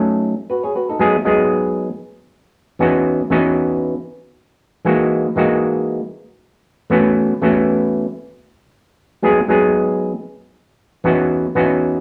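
Heard in a moderate stone-room reverb with the small-room ambience of a band playing live, this sultry, danceable disco excerpt features a lone up-front overdriven clav through a combo amp, its percussive, stringy, mellow tone shaped by auto-wah as it plays over a swung sixteenth-note feel from 0.0 to 12.0 seconds across chords moving from D#m7b5 through G#m7, C#m11, F#13 and B9sus4.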